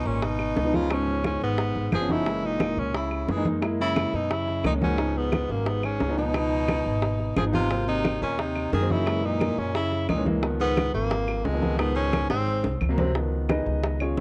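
A straight 4/4 Afro-Cuban jazz groove at 176 BPM, built on ringing low-tuned congas, tight high-tuned bongos and woody claves in the background under an up-front, steel-string pizzicato upright bass, sets a sunny, sophisticated mood in Db mixolydian, as a clear tenor saxophone with light vibrato and scooped notes leads over a punchy, forceful baritone saxophone second line and a natural-sounding upright piano, the two saxophones and piano carrying a cassette-tape tint within a home recording's moderate spring reverb, until the saxophones stop at 12.8 seconds and the piano takes a short solo from 13.2 seconds in this fragment of a longer piece.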